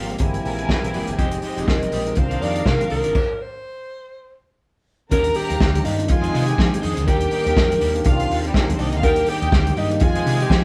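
Heard as a band playing live in one room with a moderate studio reverb, this disco excerpt runs at 122 BPM in 4/4 with a light swing on the sixteenths, and its mood is driving and glamorous. A breathy, close-miked alto saxophone carries the melody in a whispered, intimate jazz style, with subtone, soft attacks, scooped notes and vibrato. Behind it, a woody, distant violin section plays a lush, bowed second line sul tasto, while a twangy electric guitar at the edge of break-up and a clean tine electric piano heard through its built-in speakers sit in the background. A fingered electric bass, amped and punchy through an envelope filter, anchors the low end, and a lo-fi, muffled vintage drum kit with a rolled-off top, a punchy kick and a medium-tuned snare sits up front. The opening section moves through C7b13/G, Fm9 and Cm11 before a stop from 3.2 to 5.1 seconds, after which the second section sways between Ebmaj7, Fm7 and Cm9.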